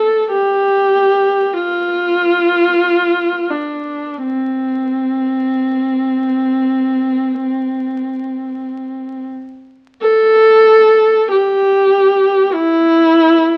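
Unfolding in free time, this short classical fragment for unaccompanied viola in C major is cut from a longer piece and carries a serene, nostalgic mood. A single dark-toned viola plays alone from 0.0 to 13.6 s between C4 and A4, bowed sul tasto with vibrato, a soft attack and an airy, intimate quality, sitting close and up front, and the music shifts to a new section at 10.0 s. Light reverb surrounds it, and the sound has the crackle and patina of a very old 78 rpm record.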